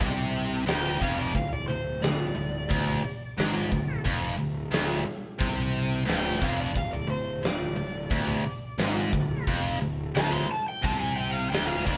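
The recording sounds like a band playing live together in one room, with moderate studio reverb lending it a sense of space. This brooding, gritty passage, cut from a longer piece, sits between blues rock power trio and southern rock, moving at 89 BPM in a straight 4/4 in D minor over a Dm chord, tuned slightly low with A4 at 436 Hz. An overdriven slide guitar, fingered rather than picked, carries the melody as a solo in its upper register from 0.0 to 12.0 seconds, its tone bright. Beneath it a double-tracked, distorted electric guitar sits up front with a low, picked riff, while a picked electric bass adds warm fuzz from a direct and amped signal. A huge acoustic arena kit of hi-hat, kick and snare fills out the sound, with a punchy kick and a fat snare in a big room.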